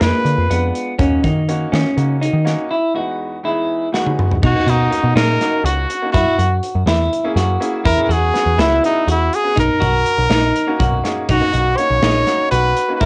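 A punchy, jazz-style trumpet with scooped notes and light vibrato leads this driving, intricate progressive band excerpt in 7/8 at 245 BPM in eighths, sounding a brief opening phrase and then returning at 4.5 s over chords such as D#m7, Emaj9 and Bmaj7, while a brilliant baby grand piano on cassette tape accompanies and adds a fill at 10.6 s, a clean semi-hollow electric guitar on cassette tape picks arpeggios, an overdriven, foam-muted picked bass sits round and up front, and an acoustic drum kit on cassette tape with a tight kick and medium-tuned snare plays a fill at 3.9 s, all in a moderately ambient home cassette recording.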